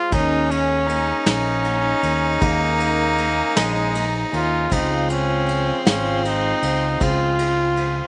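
A soft-attack trumpet with light vibrato carries the melody up front in this warm, hopeful indie folk excerpt at 52 BPM in 6/8, joined by an airy-bowed, earthy fiddle on a second line, a shimmering, octave-doubled twelve-string acoustic guitar with slapback echo in the background, a mellow, woody upright piano, a round, amped fingered electric bass, a vintage brush kit with a punchy kick and dark cymbals, and a distant, reedy chamber string section holding very quiet sustained chords, as the harmony moves from Eb7sus4 to Dbmaj7 in a dry outdoor recording.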